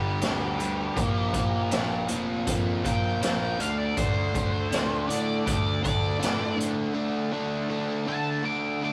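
Heavy and brooding, this short cut from a longer blues rock and southern rock power-trio piece moves at a slow 80 BPM in D minor, where a dark octave-fuzz lead guitar with wah and distortion carries the melody high above a biting, double-tracked overdriven guitar riff sitting up front. A growly fuzz bass, fingered and overdriven, drops out at 6.9 seconds, while a raw garage drum kit with a boomy kick, medium-tuned snare and hi-hat sounds saturated and gritty with a rolled-off top. The whole thing has the rough feel of a rehearsal-room recording, bathed in a wet small-room reverb.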